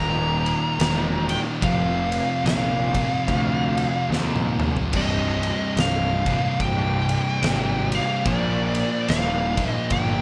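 A light reverb hangs over this brooding, ominous stretch of stoner and doom metal, cut from a longer piece and moving at a swung crawl in 4/4. Up front, a fuzz lead guitar carries the melody with a warm, distorted tone and a trail of delay, sitting high over the heavy low end. Beneath it, a bright, double-tracked distorted electric guitar and two thick fuzz guitars, one in the background and one very quiet, grind through the riff in a dark register. A fuzz picked electric bass adds overdriven weight, heard both direct and through an amp. An oversized, low-tuned acoustic drum kit enters at 0.5 seconds in a big room, with a punchy kick, a fat snare, gritty saturation, shadowy cymbals and toms, and it breaks into a fill from 4.1 to 4.9 seconds. The harmony moves from Eb5 and F5 to C minor and then Bb.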